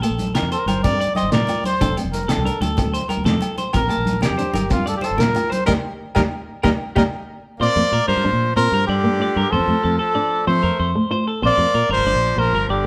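Highlife guitar band in a danceable, warm-hearted 12/8 lilt, with an up-front trumpet carrying the melody over a dark, thumb-plucked flamenco guitar, bright, twangy clean electric guitar arpeggios, a round, foam-muted fingered electric bass, a muffled, lo-fi cloth-damped drum kit with a fat snare, and ringing agogo bells and congas in the background; the band hits an accent from 5.7 seconds, the drums and percussion stop at 7.0 seconds, and a raspy, growling tenor saxophone enters at 7.6 seconds with a second line, all in a moderate stone-room reverb in this excerpt from a longer piece.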